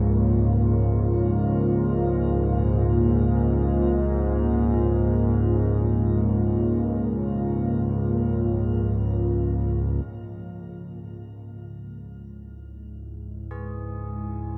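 In free time, this dark, unsettling ambient drone fragment pairs a deep, detuned sawtooth pad with chorus and shimmer reverb against a warbling, vintage analog drone low and up front, all washed in a huge, wet reverb, as the harmony shifts from A#m to C#m at 10.1 seconds, the drone and pad fade in, and soft, bronze carillon bells ring a brief arpeggio from 13.5 seconds.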